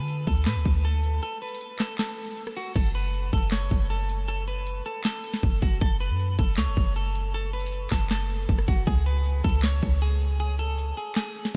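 The recording sits in light reverb and a digital ambience, with the low end and drums pushed up front. It is a menacing, eerie hip hop and trap passage in a half-time feel, cut from a longer piece. A deep, boomy 808-style bass with a clean, sine-like tone, fast attack and dark decay anchors the low end throughout. The trap drum kit is electronic and overdriven: a hard-clipped kick, sharp snare, metallic hi-hats, handclaps, rim click and crash cymbal. A warm, clean electric guitar carries the picked, compressed melody, bathed in lush chorus and a diffuse ambient delay. A break runs from 1.2 to 2.8 seconds, after which the harmony moves from D5 to F# minor and settles on C#5 at 8.9 seconds.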